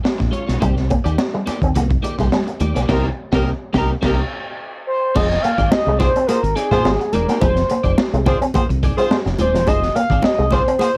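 A dry, tape-worn home cassette recording carries this sly, driving funk fragment in F dorian at 106 BPM, where a crunchy, gritty breakbeat kit with a high-tuned snare and round, dark fingered bass drive under a bright, compressed clean guitar, a twangy envelope-filtered guitar riff and soft-handed congas, before a mellow horn section hits a band accent from 2.9 seconds and an expressive sawtooth synth lead with vibrato takes the melody at 4.9 seconds over chords moving from Bbm7 and Cm7 to Fm7.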